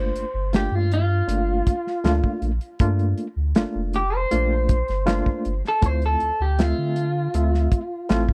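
Mournful and soulful, this short cut from a longer piece is a straight-eighth soul blues at 79 BPM in 4/4, tuned slightly low to A4 = 436 Hz. An electric guitar through a small old amp carries the melody from the start, picked and compressed with a slightly broken-up edge, playing a clean-toned solo that sits up front. Beneath it, a barky reed electric piano supplies the accompaniment with a reedy, bright bite, lightly overdriven and shimmering with a fast tremolo through its built-in speakers. A pure sine sub bass anchors the low end with a deep, clean, fast-attacking sustain, and a dry soul drum kit enters at 0.2 seconds on hi-hat, tight kick and medium-tuned snare, its top rolled off for a dark, smooth feel. The harmony moves from Gm7 to Dm7 at 5.8 seconds, all captured as a dry, close 1970s-style studio recording.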